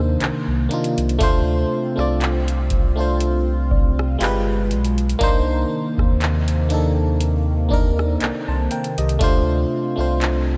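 An up-front FM electric piano accompanies this short, sensual and moody contemporary R&B passage, its glassy, bell-like attacks decaying into a warbling, vintage shimmer thickened by chorus. Beneath it, a round sine sub bass sits deep and close, while a chorused pulse-width pad holds sustained retro chords that slowly bloom with a moving notch and a ring-modulated edge. A booming analog drum machine enters at 0.2 seconds, dry and forward, with a deep kick, metallic hi-hats, handclaps and rim clicks. The groove moves at a slow 60 BPM in 4/4 with a light swing on the sixteenths, in C dorian. The harmony drifts from Cm9 through Dm7 and G7b9 and back to Cm9, and a very quiet, dark, wave-folded pluck adds a gentle D5 texture until 9.7 seconds, all set in a light reverb.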